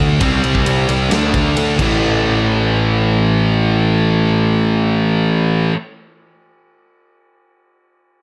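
Hard rock in free time and A minor, heavy and menacing, this short excerpt sets an overdriven semi-hollow guitar and a bright, distorted, scooped high-gain guitar on a riff over a fuzz-driven, punchy electric bass, while a big-room rock kit with a rolled-off top plays crash, ride, kick and snare from 0.2 to 1.9 seconds, ending on a drum fill at 1.8 seconds as power chords move from C5 to D5 to A5 under light studio reverb.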